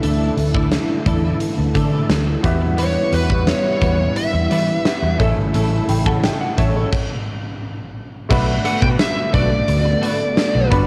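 A dark, distorted lead guitar carries the bluesy melody up front from 2.8 seconds in this moody, urgent 1980s-style pop excerpt, colored by cassette grit and analog delay. Beneath it, a huge arena drum kit plays with a fat snare, punchy kick, crash, hi-hat and tambourine in a pumping hall sound, while a round, foam-muted fingered bass anchors the low end with an amped, vintage tone. A brassy, detuned sawtooth pad holds sustained chords with a soft attack, a filter swell, a moving notch, chorus and vibrato, and a clear baby grand piano with short sustain plays accompaniment. A clean, compressed twelve-string electric guitar sits in the background with a picked riff, thickened by ensemble chorus and analog delay. The harmony moves from Dsus2 through Emadd9 to A, and after a stop between 6.9 and 8.3 seconds it lands on Bm7, all wrapped in spring reverb and the small-room feel of a home cassette recording.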